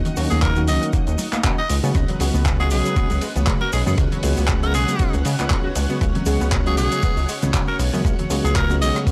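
Sleek and groovy, this nu-disco excerpt rides a swung 4/4 pulse at 118 BPM, moving from Ebm7 to Db7sus4 and cut from a longer piece. An overdriven, thumpy electronic kick enters at 0.4 seconds and sits loudest in the mix, joined by a damped 70s drum kit with dark, rolled-off cymbals, handclaps, hi-hat, ride, rim click and shaker, plus very quiet, high-tuned congas with a thin, bright skin. A glossy chorused synth bass built from pulse, sawtooth and triangle waves with a filter pluck carries the low end, while a worn, slightly out-of-tune tine electric piano comps beneath a lush string machine held in the background. An analog pluck with chorus, cassette tape colour and tape echo spins arpeggios, and the electric piano, strings and pluck all pump with sidechain compression. Over the top, a raspy, close-miked tenor saxophone carries the melody from 0.3 seconds with vibrato, scooped notes and tape echo. 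The sound is dry and gritty, with little reverb and a transformer-saturated hardware edge.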